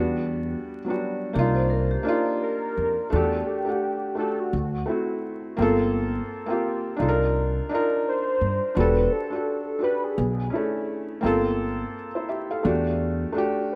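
Melancholic and nostalgic, this lo-fi hip hop excerpt moves at 85 BPM in 4/4 with a lazy swing on the sixteenths, its tuning sitting slightly below standard pitch. A velvety synth lead carries the melody across the whole clip, its detuned sawtooth and triangle voices smoothed by chorus, vibrato and a low-pass filter into a sustained, rounded tone. Alongside it, an up-front felt-muted upright piano supplies soft, mellow accompaniment, its hammer action audible and intimate, while a woody pizzicato upright bass with steel strings anchors the low end until 13.2 seconds. Briefly, from 1.3 to 2.9 seconds, a vintage vibraphone with medium mallets rings in the background, metallic yet band-limited, its slow motor vibrato trailing through an analog delay. The harmony drifts through lush minor eleventh chords such as Cm11, Em11 and Gm11, with a D7 passing through, all set in a moderate plate reverb. 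The rough home-demo mix adds vinyl crackle and a faint mains hum to the hazy atmosphere.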